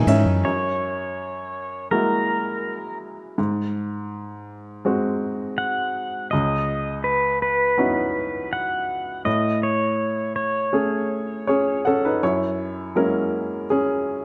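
A bright, woody upright piano with slapback echo opens this nostalgic, hopeful folk excerpt with a brief fill over a picked steel-string acoustic guitar, whose finger-squeaking arpeggios sit in the background and drop out by 0.5 seconds, before a clean, compressed pedal steel guitar, played with fingerpicks, slide and volume swells, takes an up-front solo from 0.4 seconds over chords moving from F#9 through C#m11 and Amaj7, while the piano carries the melody, adds another fill near the end of the solo and plays on alone from 11.8 seconds in a dark, lightly reverberant mix.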